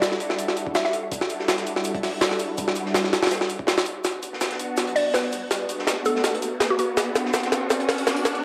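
A compressed, pitched-up jungle breakbeat sits up front, its thumpy kick, high-tuned snare and hi-hats sounding gritty and tape-warm, as if re-recorded in a large room, driving a frenetic, raw drum and bass groove at 164 BPM in E minor with a light swing on the 16ths. Behind it, a second, darker acoustic kit of hi-hat, shaker and snare adds a crunchy, smooth layer with a rolled-off top, set back in the mix. A silky string machine holds slow-attack chords throughout, shifting from Em11 to Bm, its mellow tone colored by phaser and ensemble chorus. A woody, round FM pluck with a warbling chorus, 12-bit sampler grit and dub echo plays short melodic phrases, returning at 5.0 s. This excerpt works as a build-up, with a drum fill running from 4.0 s and an electronic riser entering at 5.6 s, all framed by a moderate plate reverb and a bed of vinyl crackle.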